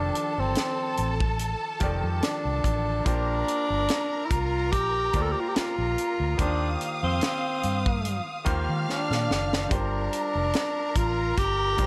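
Romantic and smooth, this lush 1970s-style soul passage in Bb major moves at 72 BPM with a gentle sixteenth-note swing, as a breathy, close-miked tenor saxophone carries the melody with scooped notes over distant strings rich in vibrato and portamento, short-sustain baby grand piano chords, a dark, round, foam-muted electric bass and a tight funk drum kit with a high-tuned snare that enters at 0.2 seconds and plays a fill from 8.9 to 9.7 seconds, set in light reverb.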